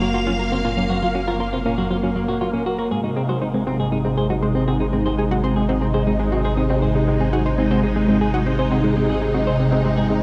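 This hypnotic, cosmic stretch of sequencer-driven ambient space music centres on a bright, swirling vintage string machine holding sustained chords up front through ensemble chorus and phaser. Around it, a round, sawtooth-and-square analog pluck with a sub octave and a filter sweep repeats its riff through chorus and tape echo, a clean, picked electric guitar plays compressed arpeggios with tape echo, and a deep, mellow sine sub bass sits underneath. The harmony moves from Gbmaj7 to Ab at 2.9 seconds, and the mix is bathed in a vast, echoing reverb with the soft grain of cassette tape.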